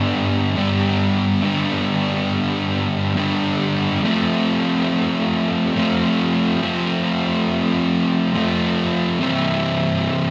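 Melancholic and cinematic, this short rock excerpt in a slow, straight 6/8 features a lone picked fuzz guitar, double-tracked and up front with a warm, distorted tone, moving from G to F and settling on C at 9.2 seconds inside the wet reverb of a stone room, as if played live by a band sharing one space.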